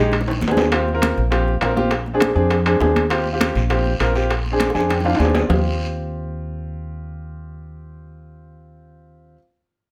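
A straight 4/4 pulse at 201 BPM drives this sunny, danceable Afro-Cuban jazz excerpt in Eb major, where an up-front warm concert grand piano with deep bass and a woody pizzicato upright bass play throughout, while thick-skinned congas, very quiet tight bongos, ringing metal-shell timbales and a raspy, band-limited guiro fill the moderate studio reverb until 5.6 s, with a drum fill opening the passage and the piano joining a second drum fill at 4.6 s.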